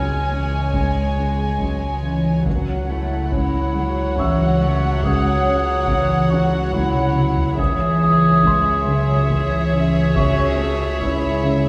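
A distant, roomy clarinet carries a classical-style second line through this eerie, uneasy suspense-film cue in C# harmonic minor, set at 70 BPM in 3/4 and moving from C#m to A6/C#. Above it a dark, woody symphonic violin section sings the melody with vibrato, while a second violin section holds a floating C#5, and violas, a cello section playing a smooth-topped riff, another cello section on the bass line and a double bass section fill out the bowed, sul tasto, soft-attack strings; a round sine sub bass drones on C#2, and a muted, boxy felt piano with audible action noise adds texture in the background. A distant taiko ensemble with heavy sticks enters at 0.7 s and plays a fill from 6.9 to 7.6 s, the whole cue sitting in the wet reverb of a recital hall.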